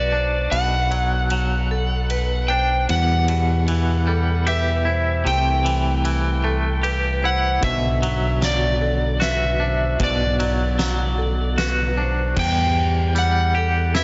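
The recording has a light reverb and a dark, rounded top end, and it is cut from a longer post-rock piece in a slow, brooding triple metre with a melancholic air. Up front, an overdriven slide guitar carries the melody through delay, sitting over a growling fingered bass that is punchy and driven hard. A clean, twangy electric guitar picks arpeggios with tremolo and delay, while a bright, airy vibraphone struck with hard mallets rings in the background with a fast motor vibrato. A huge arena drum kit enters at 0.5 seconds with a fat snare, a punchy kick, hi-hat, ride and crash, all in a big room. From 2.9 seconds a very quiet, compressed pedal steel adds sustained chords with volume swells, and the harmony moves through Bm, Em, C6 and back to Bm before turning to Em for a brief closing section at 12.4 seconds.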